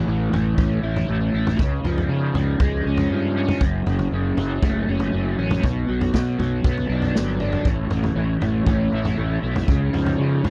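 Crunchy, double-tracked overdriven guitar pushes a picked riff through a rotary speaker from the first moment, with the round, fuzzy fingered bass sitting up front beside it, and a punchy, rolled-off vintage drum kit of kick, snare and toms joining at 0.3 seconds in a straight 4/4 at 119 BPM. This trippy, hazy psychedelic rock excerpt moves through A, C#, F#m and Bm in a dry, close 1970s-style studio sound. After a drum fill, a reedy tonewheel organ slips into the background at 7.7 seconds with sustained chords, key click, chorus vibrato and a slow rotary speaker.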